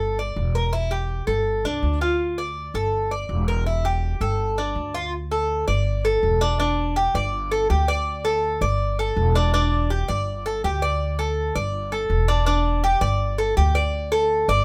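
A bright, metallic Cuban tres picks arpeggios on its doubled, partly octave-doubled strings while a woody, thumpy upright bass on gut strings sits up front beneath it. The pair sets a nostalgic, sultry Cuban son and guajira mood, cycling through suspended and minor chords in this short cut from a longer piece. At 5.1 seconds the harmony moves into a sway between Gsus2 and Em7, all in a light reverb.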